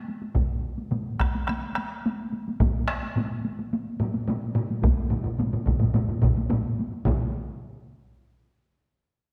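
This is Japanese traditional taiko drum ensemble music, ceremonial and driving, in a straight 4/4 feel, cut from a longer piece. One ensemble struck with hard sticks sits close and up front, joined almost at once by a second struck with heavy sticks whose sound is compressed and saturated. A solo taiko line, also played with heavy sticks, stands forward with a close, dry presence. At 2.6 seconds a further ensemble enters with heavy sticks, dry but placed in the background, thickening the texture. The whole performance sits in the reverb of a scoring stage, and after 7.1 seconds the music moves into a brief new section as the drums fall away.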